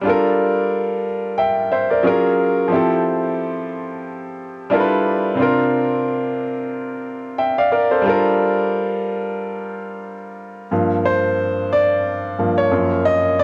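Smooth and sultry, this short R&B excerpt moves at 90 BPM in 4/4 with a gentle sixteenth-note swing, set in G dorian. A bright, brilliant grand piano plays alone and up front across its full span from F#2 to G5, voicing lush extended chords like Gm9, F#maj9 and C9sus4 before a new section begins at 10.7 seconds on Gm7 and F#maj7. Light reverb and a small-room ambience frame its natural tone, and the home cassette recording adds an intimate, lived-in character.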